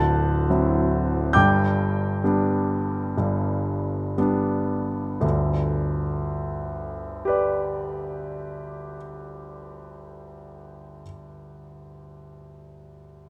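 Rubato phrasing in a slow 4/4, hovering around 28-37 BPM, stretches time in this dreamy, nostalgic romantic nocturne in G major, slowing through its opening 5.2 seconds as a D9 chord settles onto G. A solo grand piano, clear and intimate, sits up front under close, detailed microphones that catch the audible action noise, ranging from deep bass to high treble in light reverb. A second passage begins at 5.2 seconds before this fragment of a longer piece cuts off.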